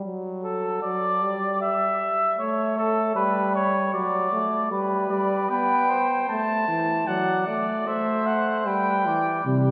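A clear, present trombone opens this stately classical canzona for brass ensemble in triple time, joined almost at once by a warm flugelhorn with light vibrato carrying a second line, both set in the wet reverb of a church. At 5.1 seconds a mellow, vintage-toned trumpet enters with the melody above them, giving the imitative writing an elegant poise. A smooth-topped tuba sounds a single low note at 9.5 seconds as this fragment of a longer piece ends.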